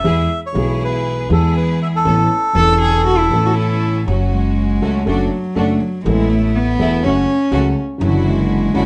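Set in 4/4 at 121 BPM with a rubato feel, this tango fragment is playful and passionate, moving from A major into F# minor at 4.1 s. A reedy, airy bandoneon carries the melody up front, then falls away at 3.5 s. A dark, mellow concert grand piano with deep bass and short sustain provides the accompaniment throughout, while a woody pizzicato upright bass with steel strings holds down the low end. A clear symphonic string section adds intense, smooth-topped bowed stabs with light vibrato. From 2.6 s a warm cello enters as a second line, and from 4.1 s it takes over as an intimate, close solo voice for the rest of the passage, bowed sul tasto with a soft attack. Moderate studio reverb lends the room a gentle depth, and the top end stays rounded.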